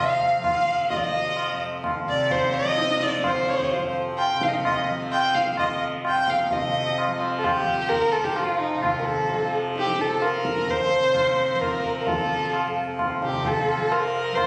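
Set in a steady, straight-felt three-beat metre, this Hindustani classical passage moves with a meditative, serene calm, and it is cut from a longer piece. A single bowed violin carries the melody up front, its rich, focused tone shaded with vibrato yet heard from a slight distance. Beneath it, a tanpura sounds a low, softly plucked drone that is bright and buzzing, with a shimmering edge. The high-tuned tabla enters at 0.2 seconds, its short-ringing strokes sitting further back in a large room and below the violin in level. A new passage begins at 6.5 seconds and continues until the close at 14.5 seconds. The whole performance is bathed in the long, wet reverb of a recital hall, recorded on a phone in the room.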